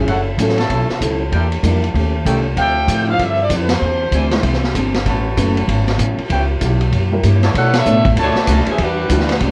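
A bright, vibrato-laden saxophone section carries the melody in this joyful big band swing at 193 BPM, entering at 2.6 seconds and returning at 7.6 seconds, while a warm trumpet section jabs out stabs and the full band hits accents. Up front, a woody pizzicato upright bass and a vintage drum kit with a punchy kick and rolled-off top drive the swing, as a mellow concert grand piano and a fingerpicked steel-string acoustic guitar sit in the background over chords that open on F#m7 and move through Dm9, E7alt and A69. A moderate club reverb and the worn, warbly pitch drift of old cassette tape colour this short cut from a longer piece.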